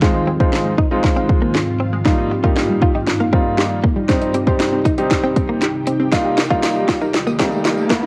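Dance-pop at 118 BPM in Eb major, this euphoric, upbeat build-up sets a punchy, overdriven house drum kit with cracking snare and bright hats up front beside an intimate grand piano with audible action noise, a clean, compressed electric guitar riff with analog chorus, ethereal sustained pad chords, very quiet detuned pluck arpeggios, a jingly tambourine entering at 6.1 seconds and a background riser from 7.0 seconds, all carrying a drum fill and filter sweep through its cassette-recorded home sound.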